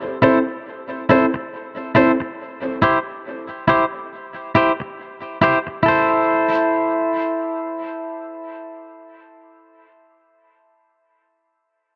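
Reggae at a slow, swung 69 BPM in A minor, heavy and meditative, this short excerpt opens with woody, boxy upright piano stabs carrying dub echo that stop at 2.1 seconds, while a clean, twangy, compressed electric guitar plays up-front picked accompaniment, also treated with dub echo, until 9.9 seconds, moving from Am to C and back to Am inside a dark spring-reverb production.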